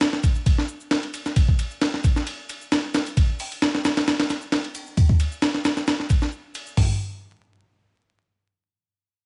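Crackling with vinyl noise, dull in the highs and nearly dry, this raw, gritty breakbeat fragment at 133 BPM in 4/4 with a light swing centres on a compressed, pitched-up sampler-style drum kit (thumpy kick, high-tuned snare, hi-hat, ride and toms, tape-warm and up front in a small room) running until 6.9 seconds, while a very quiet, layered electronic shaker sits beneath it until 6.8 seconds.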